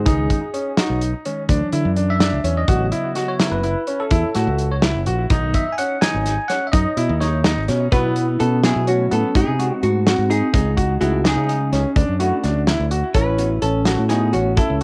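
A bell-like tine electric piano opens this intricate, bright progressive instrumental, taking a solo through the first 7.9 seconds with a lush chorus and a cassette-tape grain. A fingered electric bass sits up front from the start, joined almost at once by a loose indie drum kit with a medium-tuned snare and tight kick, and by a clear concert grand piano whose arpeggios carry a tape echo. The band moves through an uneven 11/8 with a straight feel, over chords such as C#sus2, Dadd9 and A6. At 7.9 seconds the music shifts to a new section, where a dark, compressed hollow-body jazz guitar takes the melody and a mellow vibraphone, played with soft mallets and a fast motor vibrato, adds a ringing second line in the background. Light reverb and the character of a home cassette recording shape the piece's sound before it cuts off as part of a longer work.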